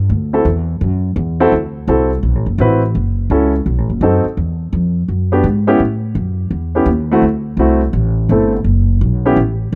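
A brisk swing at 168 BPM in 4/4 drives this brassy big band jazz excerpt in D mixolydian, moving from D7 through F#m7, B7b9, Em and A5 before settling back on D7. A woody, growly pizzicato upright bass sits up front from the start, and a clear baby grand piano joins at 0.3 seconds with short-sustained accompaniment in the middle register. The dry, close studio sound has a 1970s character.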